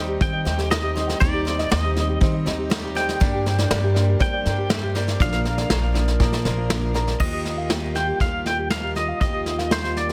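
A soft brush drum kit sits up front in this nostalgic, anthemic indie folk passage cut from a longer piece, its tight kick, medium-tuned snare with a touch of soft clipping, and crash cymbal entering at 0.2 seconds in a natural studio room. Over a straight 4/4 feel, a clean, twangy electric guitar carries the melody with a compressed, tremolo-tinged tone, while a woody, thumpy pizzicato upright bass anchors the low end. Behind them, a shimmering, octave-doubled twelve-string acoustic guitar, a mellow thumb-plucked ukulele playing arpeggios, and a brilliant, intimate, polished upright piano with audible action noise and long sustain fill out the accompaniment as the chords move from Cm/Eb through Gm to Bb. At 7.2 seconds the piano drops away, the harmony settles onto Ebadd9, and a full-bodied, fingerpicked dreadnought guitar joins quietly in the background as the arrangement builds. Light reverb and a dense, heavily limited modern master round out the recording.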